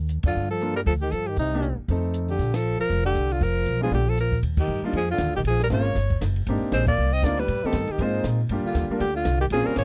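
A dry, close studio sound in a 1970s vein frames this relaxed, swinging small-group jazz, cut from a longer piece in the swing and bop style. A woody, pizzicato upright bass sits up front, joined by a compact cocktail kit with dark cymbals, a high-tuned snare and a punchy kick, while a clear alto saxophone carries the melody with scooped notes and vibrato over a breathy, whispered tenor saxophone on a second line. A polished concert grand piano with deep bass fills in the accompaniment, the band hits shared accents at moments such as 2.5 and 6.8 seconds, and the harmony shifts into a new section at 4.4 seconds.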